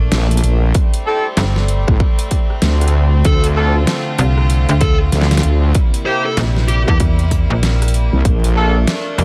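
A heavy, chorused wobble bass with tube saturation sits up front in this playful, swaggering glitch hop excerpt in D minor at 96 BPM, swung on the 16ths and tuned to A4 = 435 Hz, joined by a snappy, metallic slap-like FM bass and an overdriven, punchy electronic kick that arrives at 0.7 seconds. An overdriven dubstep kit with a deep snare, metallic hats and rim clicks drives beneath tight, jazz-style horn stabs that carry 12-bit sampler grit, delay and sidechain pumping, while bright, earthy chamber strings hold pumping chords through Bbmaj7, Am7, Dm7 and C7. A dark, picked overdriven lead guitar with delay plays a short melody from 3.3 to 7.0 seconds over a constant bed of vinyl crackle.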